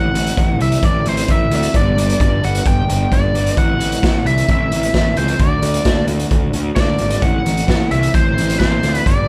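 Angsty and cathartic, this quiet-loud alternative rock excerpt in A dorian moves at 131 BPM in a straight 4/4 over Am, G and D, with a biting, dark overdriven lead guitar carrying the melody, a twangy, slightly broken-up electric guitar picking arpeggios in the background through a small old amp, a round fuzz bass, and a gritty, saturated garage drum kit up front from 0.2 seconds, all captured as a band playing live in one room with light reverb.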